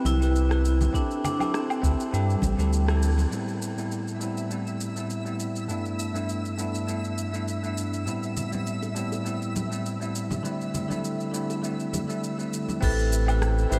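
A dreamy mix soaked in a huge ambient reverb frames this short, wistful sunset chillout piece, cut from a longer work, moving at 101 BPM in 4/4 with a gentle sixteenth-note swing in A minor. A bell-like, clean tine electric piano sits up front throughout, carrying the chords from a rootless Am7 through D9sus4 and G6, while a vibraphone struck with medium hard mallets sings a metallic, ringing melody with fast motor vibrato, both parts trailed by analog delay. Underneath, a round, deep analog bass with tube saturation and a soft electronic kick give the opening weight, and the band hits an accent at 2.9 seconds. A produced, smooth R&B kit of crash cymbal, rim click, shaker and woodblock runs the whole way, with acoustic congas and bongos ringing in the background of a small room. From 4.1 seconds a twinkling granular texture with an octave-up shimmer and a slow attack floats high above, then at 12.8 seconds the vibraphone, bass and kick return for the closing Am7.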